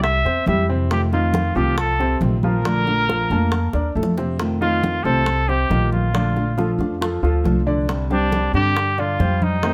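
Cuban son and guajira in a sunny 4/4 at 138 BPM in Bb major, this excerpt features a breathy, intimate trumpet melody with vibrato up front, over fingerpicked nylon-string guitar with audible finger squeak, clear grand piano arpeggios with audible action noise, a woody, thumpy pizzicato upright bass, tight high-tuned bongos and ringing congas tucked in the background, with a drum fill from 3.7 to 4.4 seconds leading into the second section, all under light reverb.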